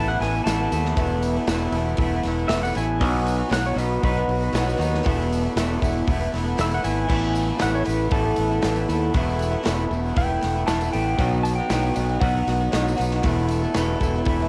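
A fingerpicked pedal steel guitar carries the solo melody with volume swells, slide and cassette-tinged analog delay over a nostalgic, open-road folk and heartland rock groove built from a slightly broken-up, lo-fi electric guitar riff, a bright, growly fingered bass with tube saturation, a punchy, airy country drum kit, a boxy swing-picked acoustic guitar and jingly tambourine in the background, and a very quiet, intimate grand piano with audible action noise and a reedy, breathing harmonium holding sustained chords, all set in a small-room home cassette recording.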